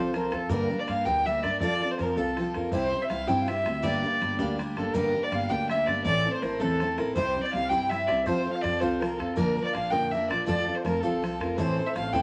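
A boxy, woody fiddle with light vibrato carries the melody up front from the first moment of this dark, lively and driving Celtic jig in G dorian at 108 BPM in 6/8, joined by an airy, crisp-attacked silver concert flute on a second line, a bright, full-bodied picked steel-string acoustic guitar also up front, a warm pizzicato upright bass and, from 0.1 s, a damped, tight bodhran in the background, set in wet studio reverb with a veil of vinyl crackle on this passage cut from a longer piece.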